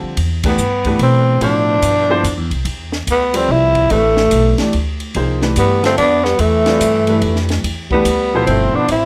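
A growling, breathy tenor saxophone leads this searching, cool modal jazz fragment in a swung triple metre, up front over a warm, open baby grand piano, a woody pizzicato upright bass and a dry compact cocktail kit with dark cymbals and a punchy kick, all given light reverb; the band hits an accent at 0.4 seconds, and a bright, vintage-toned trombone enters in the background at 5.6 seconds with a second line.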